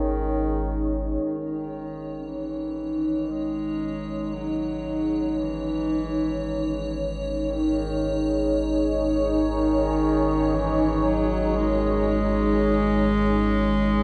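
Dark ambient drone in free time, dark and desolate: a deep, moody pad sits up front in sustained chords over an ominous, rumbling drone that gets a filter sweep in its first 1.2 seconds before fading in, while a distant, clear bass clarinet enters at 1.2 seconds with a delayed melody, joined by an icy, crystalline glass pad and, from 2.2 seconds, very quiet arpeggios on a gamelan-type bronze metallophone with shimmering beats, all drenched in a huge, dreamy reverb.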